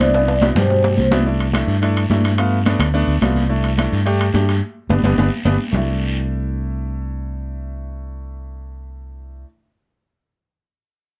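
Dark, lightly reverberant production frames this sunny, sophisticated Afro-Cuban jazz fragment, where a mellow soft-mallet vibraphone with medium motor vibrato states a brief melody that ends at 1.1 s over natural grand piano chords and a growly, up-front fretless electric bass, while high-tuned congas sit in the background beside close, dry metal-shell timbales and a raspy, vintage guiro, with drum fills, piano fills and a band accent leading to the percussion's exit at 5.8 s, leaving piano and bass to carry on until 9.4 s.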